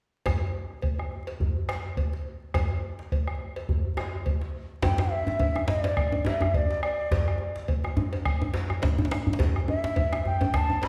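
West African traditional drumming drives this earthy excerpt at 105 BPM in 4/4, with a light swing on the sixteenths. From 0.3 seconds a round, up-front bombo, a close and dry metallic cowbell, and a tight, cracking djembe struck with hard hands and set distant in a large room lay down the groove. At 4.8 seconds a breathy, mellow bansuri enters up front, its bamboo tone carrying vibrato, a crisp attack and rolled-off highs as it moves between D5 and B5. A second djembe joins at the same moment, deep and close, played with soft hands and sitting up front. The ensemble is heard from further back in a reverberant recital hall, with vinyl crackle adding an aged texture, and the music is cut from a longer piece.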